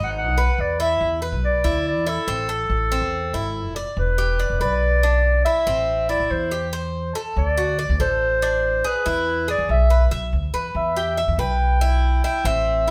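Latin piece at 142 BPM in A harmonic minor, warm and danceable, with a clear, classical-style clarinet carrying the melody from A4 to G5 over bright, metallic arpeggios on a Cuban tres with doubled strings and a woody, thumpy upright bass plucked on gut strings, the band playing live together in a moderately reverberant stone room through chords such as Am, Em7, D7 and E across this 12.9-second excerpt.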